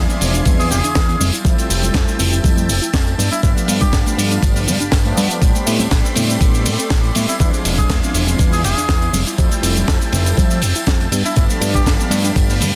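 A raspy, gritty tenor saxophone with vibrato and digital delay takes the melody from 0.6 s in this sleek, cosmic nu-disco excerpt at 121 BPM, riding a lightly swung groove of a knocking, up-front electronic kick, a tight funk kit with a high-tuned snare, hi-hat, ride and cabasa, and background tambourine and congas, all over a fat, saturated, nasal analog bass, dark detuned synth brass with chorus, phaser, dub echo and sidechain pumping, a lush, bright unison pad, and a very quiet soft, round pluck arpeggio moving through chords like E7b9b13, Fmaj9, G9 and Am11 in a dense, heavily limited modern mix.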